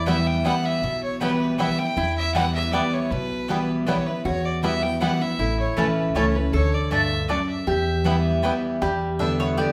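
Driving and rustic, this bluegrass excerpt in 3/4 at 158 BPM swings lightly through E dorian from Em to A and D and back, with a clear, nasal fiddle carrying the melody until 8.6 s alongside a twangy, fingerpicked banjo, a metallic lap resonator guitar sliding a second line, a full-bodied jumbo acoustic guitar up front with audible finger squeak, a thumpy, woody upright bass, and bright mandolin stabs in the background, all captured as a band playing live in one room with a wet large-studio reverb.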